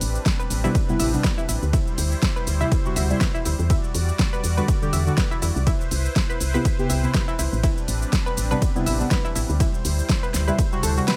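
A dry sound with little reverb frames this moody, deep house excerpt, cut from a longer piece and moving at 122 BPM in 4/4 with a 56% swing on the sixteenths. A punchy, overdriven electronic kick enters at 0.3 seconds over a layered kit of hi-hat, ride cymbal, shaker and a fat, overdriven snare. Beneath it, a woody, round FM bass with a dark tone and sidechain pumping holds down the low end. Deep mellow chord stabs, soft and wave-folded, carry chorus, phaser, delay and a cassette-tape color, while a smooth, detuned analog pad glows with chorus and tremolo behind them. A bright analog pluck with a sub octave and a filter sweep spins arpeggios through delay as the harmony cycles through Am11, D9sus4, Em9 and Cmaj7.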